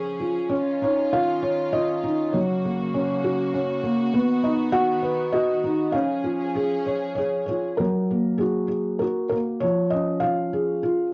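A felt-muted upright piano and a small chamber string section begin together, the piano carrying a tender lullaby melody over sustained string chords in F# major. The piece moves in a gentle 3/4 at about 99 BPM with a rubato feel, so the pulse breathes freely. The piano sits up front with a thick-felt, mellow, dark tone, and its hammer action can be heard close by. The strings sit much lower in level, playing sul tasto with light vibrato and soft attacks, lending the chords a hushed, bowed glow. The harmony drifts from C# through F# and B before the strings drop out at 7.8 seconds, leaving the piano alone until this fragment of a longer piece breaks off at 11.1 seconds. A home cassette recording with a rolled-off top end and a wet, short studio reverb gives the whole a soft, intimate, slightly faded character.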